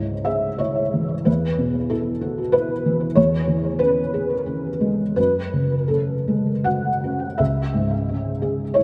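Neoclassical minimalist piano in C# minor, wistful and reflective, in which a solo felt-muted upright piano with a thick-felt, intimate tone sits up front in a rubato 3/4 drifting around 77-95 BPM, its short-sustained notes from C#2 to F#5 tinted by ensemble chorus and delay and soaked in a dreamy plate reverb as the harmony moves from C#m through Esus2, C#m/E and F#madd9 back home to C#m across this brief 8.8-second fragment of a longer piece.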